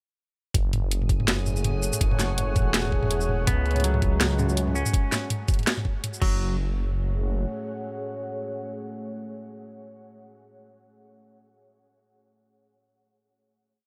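Half-time drum and bass with a tense, dark mood, where a knocking, tape-warm kick and an overdriven kit with cracking snare and bright hats drive a sparse beat over long, rumbling detuned saw bass notes, while a metallic, eerie drone holds a high note in the background, a deep, mellow pad with chorus and sidechain pumping carries slowly shifting chords, and a clean semi-hollow electric guitar enters at 3.5 seconds with a tape-echoed 12-step arpeggio loop drifting against the bar before the pad sustains a final chord alone from 7.5 seconds.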